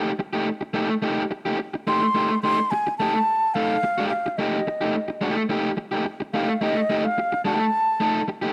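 A straight 4/4 funk groove at 108 BPM in F mixolydian sets a playful, funky mood in this brief excerpt, where a crunchy, overdriven electric guitar sits up front comping on a rootless F9 from the start, joined at 1.9 seconds by a breathy, mellow concert flute carrying the melody with vibrato, a crisp attack and rolled-off highs, both parts bathed in plate reverb within a dark, moderately reverberant production.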